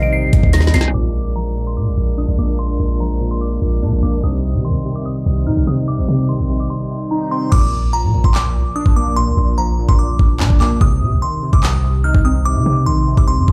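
Knocking kick, woody snare and metallic hats from an electronic drill kit sit up front in this cold, dark 146 BPM half-time excerpt, cut from a longer piece, with a short drum fill at 0.5 seconds before the kit drops out and returns at 7.5 seconds with its hi-hats muted. A deep, mellow 808-style sine bass sustains beneath warbling, detuned lo-fi synth keys with ring modulation, a noise layer and a filter sweep, while a delicate, tinkling FM tine bell carries the bright melody through chorus and digital delay. Soft flute stops on a pipe organ sustain chiffy baroque-voiced chords from the start until 7.5 seconds, carrying through a brief break from 6.7 seconds, as the harmony moves between Cm and Bb in a booming, bare-room sound.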